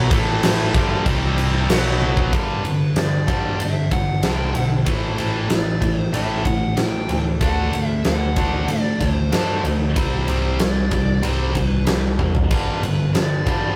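This menacing, driving hard rock passage at 94 BPM in 4/4 opens on a dense wall of sound. A very quiet, gritty overdriven tonewheel organ holds thick sustained chords through a slow rotary speaker with chorus vibrato. Beneath it, a tight distorted guitar, a pair of scooped high-gain guitars tucked in the background (one double-tracked), and a growly, punchy overdriven picked bass all push a riff over the chords A5, C5 and B5. A huge arena drum kit sits up front with a fat snare, punchy kick and bright cymbals, and a short fill leads the organ and one scooped guitar to drop out at 2.3 seconds. A dark high-gain lead guitar then enters at 2.4 seconds with a melody over G, Am, D and Csus2, and another drum fill arrives at 12.2 seconds before the return to G. The rough rehearsal-room sound carries a moderate reverb that gives the fragment a raw, live-in-the-room weight.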